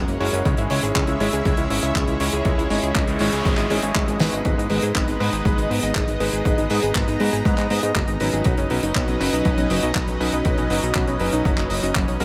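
Danceable and bittersweet, this italo disco excerpt moves at 120 BPM in a straight 4/4, with a lush, detuned sawtooth pad holding sustained chords through chorus, phaser and shimmer reverb while a very quiet, nasal analog pluck runs arpeggios. A fat, saturated analog bass anchors the low end alongside a punchy, tape-warm electronic kick and a dry, airy 70s kit of hi-hat, fat snare and handclaps. A clear vintage electric grand piano adds stabs in the background through tape echo and shimmer reverb, a faint noise sweep enters at 2.8 seconds and leads into a drum fill at 4.2 seconds, and the harmony shifts from C#m to Badd9 in a small, lightly reverberant room.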